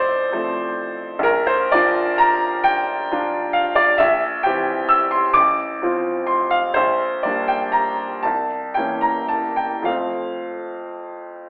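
Flowing in a lilting compound metre with a slow dotted-quarter pulse, the rhythm stretches and relaxes with free rubato. This excerpt from a longer romantic nocturne is classical in style, and its mood is dreamy and serene. A single upright piano carries everything, sounding brilliant and woody with an open, up-front presence as it ranges from A1 up to E6. The harmony drifts gently through a short progression, leaning on a colourful C7b9 near 8.2 seconds before settling home at 9.9 seconds. A wet recital-hall reverb blooms around the instrument, while a telephone-like filtering narrows the overall sound, lending the passage a distant cast.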